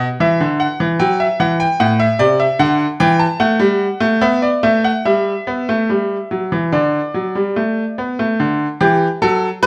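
A bright concert grand piano sits up front in a stone room whose moderate reverb gives each note a short, natural halo. This is a brief, joyful and elegant baroque-style two-part invention in 4/4 with a straight feel, cut from a longer piece. The solo piano covers a range from A2 to A5, so a deep bass anchors the brilliant upper register. The harmony moves from E minor through A minor to G and D before a new section arrives at 8.4 seconds on a G chord over D. The piano plays throughout until the excerpt ends at 9.7 seconds, with the instrument tuned to A4 = 444 Hz.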